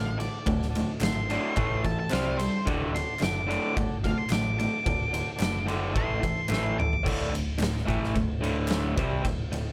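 Garage rock with a rowdy, swaggering strut, this short cut from a longer piece rides a straight 4/4 at 109 BPM in D mixolydian. An octave-fuzz lead guitar, dark and distorted, takes a solo from the very start to 7.1 s, while a bright, overdriven, double-tracked garage guitar pounds out the riff up front and a round, punchy hollow-body short-scale bass with tube saturation anchors the low end. Behind them a reedy vintage combo organ holds clean sustained chords in the background until 7.0 s. The oversized, low-tuned kit sounds gritty and saturated in a big, pumping room, with a fat snare, boomy kick and dark cymbals, and it throws in a fill just before the solo ends. Crisp, close group handclaps join at 1.0 s, and the chords move between D and A5 with a brief C5 before the garage guitar, bass and drums settle on D5 for the final section under a light reverb.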